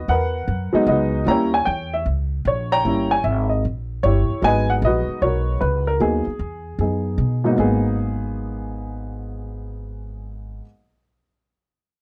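Moody and smoky, this short excerpt of jazz swings at 152 BPM in 4/4 in G# minor, moving from G#m9 to D#7b9 and back. An upright piano with a woody, slightly detuned tone and short sustain carries the melody up front. A thumpy pizzicato upright bass with steel strings holds the low end in a dry, close 1970s-style studio sound, and the music moves into a new section at 7.6 seconds.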